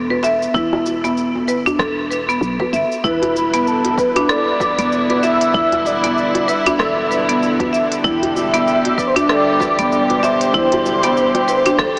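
A round, dark FM bass with sidechain pumping opens this earthy organic downtempo excerpt. It is joined at once by a bright, close-miked marimba playing hard-mallet arpeggios up front through a low-pass filter and analog delay, a medium-tuned djembe, a deep house kit of smooth hi-hats, rim click and shaker, and a punchy, layered electronic kick, all over a swung 4/4 groove. At 3.0 s a breathy, flute-like synth lead with chorus, vibrato, 12-bit sampler grit and delay carries the melody, while a distant, floating string section holds sustained Em7 chords bowed sul tasto, also pumping to the sidechain, and the whole dreamy mix sits soaked in a huge ambient reverb with a small-speaker character.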